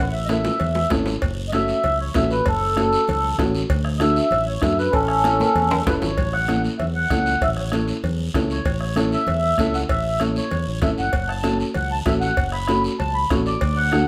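Sunny, danceable cumbia in A major at 194 BPM, cut from a longer piece, where a reedy, mellow accordion with plate reverb sits up front and solos until 6.2 s over drum fills at the start and just before that point, backed by a fingered electric bass, a dark, woody upright piano, a soft-beaten bombo, bright background congas, ringing cowbell and timbales, and a raspy guiro, all in a moderate large studio reverb.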